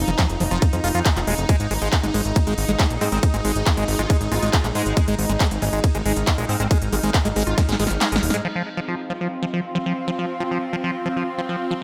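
Cut from a longer psychedelic trance track in F minor at 138 BPM, this hypnotic drop opens on a fat, detuned analog bass with tube saturation under a morphing wavetable pad with phaser and an airy, breathy pad with chorus, both pumping in the background. A tight, overdriven electronic kick sits up front with a big-room dance kit of punchy snare, crisp hats, handclaps and cymbals in a large room, while a squelchy, resonant acid bass riff with phaser and delay and a faint metallic FM wobble bass circle through the mix. A drum fill at 7.6 seconds brings the kick dropping out at 8.0 seconds, and the fat bass and drum kit stop around 8.4 seconds, leaving the pads and the acid riff to carry on.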